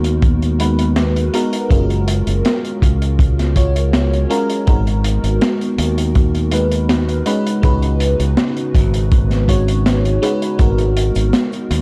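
An FM electric piano with a soft pad layer leads this woozy, melancholic vaporwave excerpt, its lush, detuned chords sitting up front with a fast attack and a dreamy decay, coloured by phaser, subtle chorus, tape echo and cassette tape grit. Underneath, a warbling, tape-like pad holds long, sustained chords in the background, its slow attack and long release wrapped in chorus and built-in reverb for a nostalgic, lo-fi haze. A bright, fingered electric bass sits direct and close, warmed by tube saturation. A crunchy breakbeat kit of snare, hi-hat and cabasa moves at a straight 81 BPM in 4/4, its dark, gritty tone rolled off at the top, while a punchy, saturated kick drum joins at 0.2 seconds and drops out at 10.8 seconds. In G# dorian, the harmony drifts from G#m9 to F#maj9, returns to G#m9 and moves to C#9sus4 before settling back on G#m9, all inside a dark, small-room production with light reverb.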